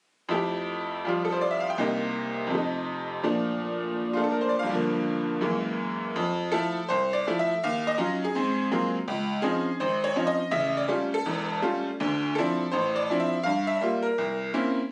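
Swung eighths pushed and pulled with rubato give this short passage of solo jazz a playful, swinging lilt in 4/4. A lone tack piano carries everything, its jangly, metallic tone sounding bright and up front as it moves through rich extended chords, with a second section beginning at 6.2 seconds. Captured on a phone in a club-like room, the sound has moderate reverb, compression and an audible studio ambience.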